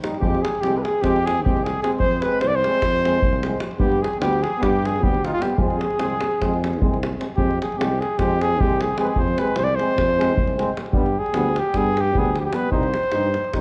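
A deep, up-front davul opens this restless, virtuosic Balkan folk brass band excerpt in 9/8 at 302 BPM (eighths), with a clear, close-miked trombone and a distant, roomy euphonium in the background, before a punchy flugelhorn with tape echo takes the melody up front at 0.2 s over a tuba bass with light vibrato, while a very quiet, mellow alto saxophone with vibrato and a smooth top carries a second line until 7.0 s, the piece set in F dorian sharp4 moving through Fm, G and Cm within a dark, warm production and a moderate recital hall reverb.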